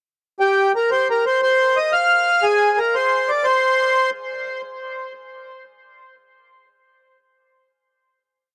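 A dry, close recording with a 1970s studio feel frames a brief, wild and dark Celtic jig in C minor, moving at 118 BPM in 6/8. A lone accordion sits up front with a reedy, full and smooth voice touched by tape echo, shaping motif-based melody in period phrases between G4 and F5 from 0.4 to 4.1 seconds. The piece closes on a final hit at 4.5 seconds.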